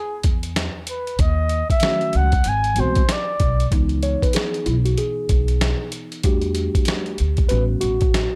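A dry, gritty hardware recording captures a mellow, cool jazz-hop groove at 95 BPM in C# minor with swung 16ths, where a close-miked flugelhorn solos up front with vibrato and scooped notes until 3.7 s, a woody, dark pizzicato upright bass and a compressed boom bap sampler kit with a thumpy kick enter at 0.2 s, and a clean tine electric piano takes over the solo from 3.7 s over chords moving from C#m9 through Em11 to A13.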